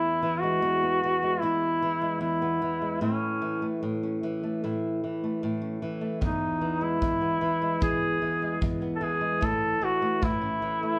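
Acoustic pop at 75 BPM in a straight 4/4, this short excerpt from a longer piece feels carefree yet heartfelt, moving between E major and A chords. A clear duduk carries the folk-style melody up front, singing with vibrato and scooped notes that give it a vintage character. Beneath it, a dark flamenco guitar is fingerpicked close to the listener, with audible finger squeak adding intimacy to the accompaniment. A punchy acoustic kick drum, played with brushes, joins at 6.2 seconds and drops out at 10.4 seconds. The band plays live together in a large studio, and a moderate reverb gives the performance a natural sense of space.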